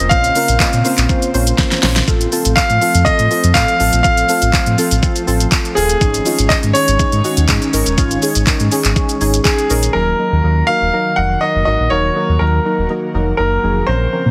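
A straight 4/4 pulse at 122 BPM from an up-front electronic pop drum kit, with a knocking kick, fat snare, crisp hats, handclaps and shaker and a fill at 1.6 s, drives this confident dance-pop excerpt until 9.9 s. Above it, a clear, intimate grand piano with digital delay carries the melody over a full sine sub bass with octave, dark detuned chord stabs and a breathy pad set in the background. The stabs and pad are both thickened with chorus, and all three pump to the sidechain. The whole sits under light reverb and a heavily compressed radio sheen as the harmony moves from Bbmadd9 through F/A and Absus4 to Ebm.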